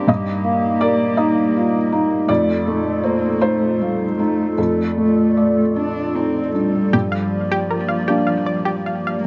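A soft, felt-muted upright piano sits intimately up front with plate reverb in this longing, melancholic neoclassical excerpt in G minor, drifting in a rubato 6/8 at 50-55 BPM while a woody, sul tasto cello bows a second line with vibrato, tape echo and plate reverb, a hollow, flute-like pad holds slow-attack chords through chorus, and a round, detuned analog pluck enters at 6.9 s with arpeggios carrying chorus and tape echo, the recording set in wet studio ambience with worn, warbling cassette pitch drift.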